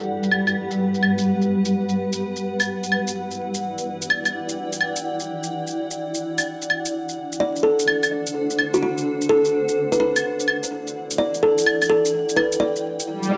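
Swung at 127 BPM in 4/4, up-front overdriven shaker and claves drive this wistful, rainy future garage piece in E minor beneath a cloudy, detuned granular cloud pad whose sustained Gmaj7, Em9 and D7 chords carry vintage 12-bit sampler grit and built-in reverb, while a woody, bright kalimba melody with analog delay enters at 7.4 seconds and a brief electronic swell arrives at 13.2 seconds, within a dry, gritty hardware recording touched by vinyl crackle and light digital ambience.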